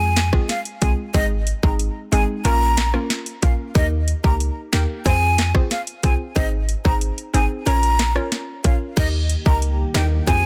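A breathy jazz flute with vibrato and delay carries the melody in this hypnotic, tough dancehall excerpt at 92 BPM, riding over a hollow, detuned square pluck with chorus, a deep, boomy 808-style bass and an up-front electronic drum kit with a tight kick, sharp snare, metallic hats and handclaps, all cycling through Fm, Ab, Bbm and Eb in a dense, dry modern master, with faint, distant bongos slipping in at 9.9 s.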